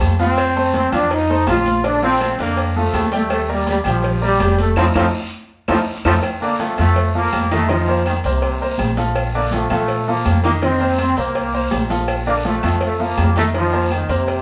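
A bright, up-front trombone section carries the melody through this festive, sunny salsa in Bb major at 164 BPM, over a thumpy, gut-strung pizzicato upright bass and a brilliant, worn baby grand piano with audible action noise, while background congas, ringing timbales and agogo bells, a round low-tuned cowbell, woody claves and a raspy guiro fill out the percussion; a drum fill and band accent land from 4.8 to 6.2 s before the harmony alternates between Bbmaj7 and F7sus4, heard in a moderate large-studio reverb.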